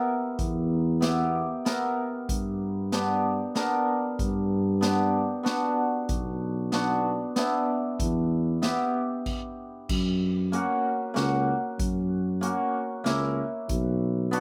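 A dark tuba with light vibrato carries this bittersweet, festive klezmer tune at 95 BPM in 3/4, joining at 0.4 seconds alongside a street-band drum kit with a boomy kick and dark cymbals over a shimmering, hammered cimbalom with slapback echo, all in a dry outdoor sound, moving through E minor, G and B minor before a brief stop at 9.3 seconds leads to an F# passage in this section of a longer piece.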